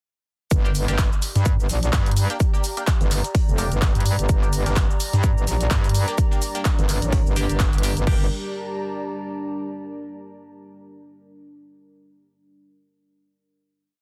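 An overdriven, punchy four-on-the-floor electronic kick at 127 BPM with swung 16ths drives this bouncy, swaggering bass house piece in G minor, joined by an overdriven house drum kit of claps, shaker, hats and crash, a very quiet, gritty breakbeat loop with a high-tuned snare, an up-front, saturated metallic wobble bass whose modulated phrases change wobble speed, nasal band-passed syncopated chord stabs with phaser and dub echo, a warbly lo-fi tape-like pad entering at 1.3 seconds, and a deep, dark ambient pad arriving at 5.6 seconds, before a final chord from 8.1 seconds closes the dense, heavily limited mix.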